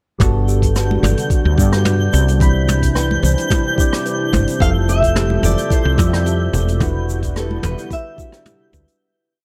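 A sunny, warm sunset chillout groove in G major at 109 BPM with a light 16th-note swing opens at 0.2 seconds with a round, dub-style fretless bass up front, a soft knocking electronic kick, a brushed jazz kit's light lounge beat of shaker, closed hat, rim and low tom, mellow rootless electric-piano-like synth chords with syncopated pushes through chorus, phaser and tape echo, a silky vintage string machine pad in the background, and a woody kalimba arpeggio with tape echo, all moving through Gmaj7 and Cmaj9. At 0.9 seconds very quiet congas and a sparkling granular high G shimmer with built-in reverb join in. A fingerpicked flamenco guitar enters at 4.6 seconds with a free, echoing melody over the Fmaj9 and Em9 changes as the whole piece fades out from 6.1 seconds in a dry, close sound.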